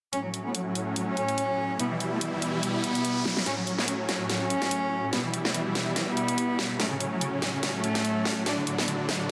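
A dense, heavily limited modern mix in a moderate plate reverb carries this heavy, menacing half-time wobble dubstep excerpt, where huge, detuned supersaw chords pass through a low-pass filter sweep beneath a nasal, floating sul tasto cello melody with digital delay, an up-front electronic kit plays filtered hi-hats and a huge snare, a background riser sounds from 1.6 s to 3.5 s, and a drum fill at 3.3 s leads into a build-up that lasts until the end.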